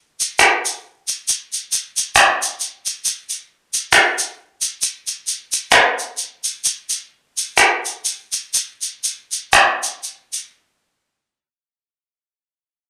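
A home cassette recording with light reverb gives this R&B excerpt a warm, sensual mood at 58-68 BPM in 4/4, with a swung 16th-note feel. Egg shaker and finger snaps carry the percussion from 0.2 to 10.5 seconds, sounding acoustic, like a group handclap in a large room, at once distant and up front. The tempo slows from 3.0 seconds until the percussion stops at 10.5 seconds, where a new section begins.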